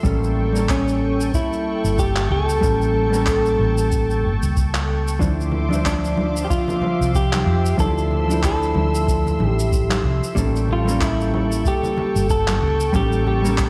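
Heard through a big sound system in a bare stone room with light reverb, this smooth, wistful sunset chillout excerpt swings gently over an A7b9 to Dm9 and back to A7b9, with a deep analog electronic kick, gritty sampled cabasa and handclaps, a round, up-front short-scale hollow-body fingered bass, a dark hollow-body jazz guitar with delay comping beneath a thick, warbling detuned unison pad with chorus, a clean fingered electric guitar melody with delay entering at 0.7 s, and soft-handed, ringing congas slipping in very quietly at 5.2 s.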